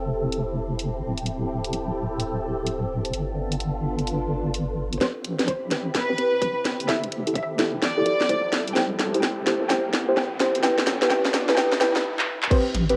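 UK garage in a skippy two-step shuffle at 128 BPM, this moody cut opens on a silky, phased string machine and a deep, wobbling bass pumping beneath a cracking snare, then at 5.0 seconds a tight kick, dark chorused chord stabs under a filter sweep, and an earthy, lightly vibrato violin section join a build-up with drum fills, joined at 7.1 seconds by a background riser, before a brief stop at 12.0 seconds, all bathed in spring reverb and cassette grain over Fmaj9, D9sus4, G9 and Am9 harmonies.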